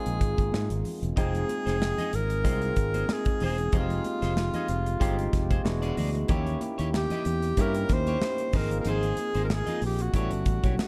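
A lightly swung 16th-note groove at 94 BPM in 4/4 drives this short, nocturnal cut of polished 1980s jazz-funk pop in F minor, with a punchy up-front kick, airy snare and hi-hat, round fingered bass and very quiet, high-tuned congas underneath. A breathy, whispered alto saxophone carries the intimate melody close to the ear, over a barky tine electric piano colored by overdrive and lush chorus, while a twangy, slightly broken-up guitar riff with subtle chorus enters at 1.2 seconds. Chords such as Fm7, E9 and Eb7b9 move beneath a dark, warm production with light studio reverb.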